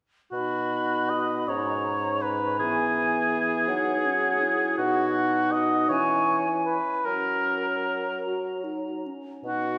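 At 0.3 s a tender, slow romantic orchestral movement in a rubato 6/8 begins, with an up-front oboe singing a second line with light vibrato, a mellow bassoon accompanying with soft attack, and a dark clarinet and a pure, distant, tongued silver concert flute adding their own lines, the passage cut from a longer piece and heard in a wet concert hall.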